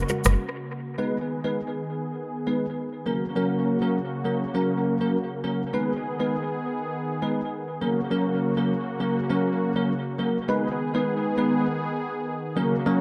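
A light digital reverb and echo-heavy mix surround this smooth, mellow afrobeats excerpt at 101 BPM in G# minor, with a gentle swing on the sixteenths. A soft, detuned sawtooth pad with chorus holds sustained chords from the start, and at 1.0 seconds a bright, bell-like tine electric piano joins up front, its clean accompaniment carried by ensemble chorus and dub echo. The harmony rocks between G#m and F#, settling on G#m as a new section begins at 10.5 seconds.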